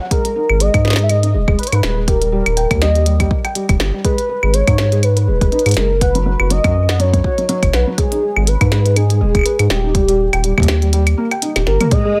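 A round, up-front analog bass with a nasal edge and tube saturation anchors this melancholic, intricate IDM excerpt, entering at 0.5 s. Above it, a velvety synth lead carries the melody through chorus and tape echo, while a felt-muted upright piano plays soft, intimate arpeggios through digital delay. A deep electronic kick and a glitchy kit of tiny snare, clicky hats, claves and toms give a swung, tape-warm pulse in a small room. The kick drops out at 10.9 s before a drum fill closes the passage, as the harmony cycles through G#madd9, D#, G#m and F#sus4. At 12.0 s a silky vintage string machine enters, followed at 12.1 s by a very quiet, flickering, grainy texture, just as the piece is cut, and the mix stays dry and close throughout.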